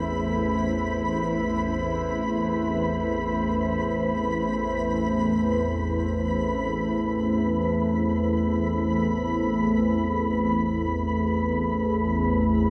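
A deep, moody pad sits up front, holding sustained chords in A minor that open on an Amadd9, its detuned sawtooth layers and sub octave giving a full-bodied, mellow weight. Beneath it an organ-like drone warbles low with a vintage, ensemble-chorused character, and a filter sweep moves across it through both sections, the second beginning at 9.9 seconds. High above, a flickering, grainy texture glints brightly on a single pitch, while tubular bells, barely audible, trace solemn metallic arpeggios until they fall away at 9.9 seconds. This ominous, cavernous ambient passage drifts in free time, cut from a longer piece. A wet cathedral reverb with a 5.6-second decay surrounds the music, leaving the pad, drone and grainy texture to sustain together through 12.7 seconds.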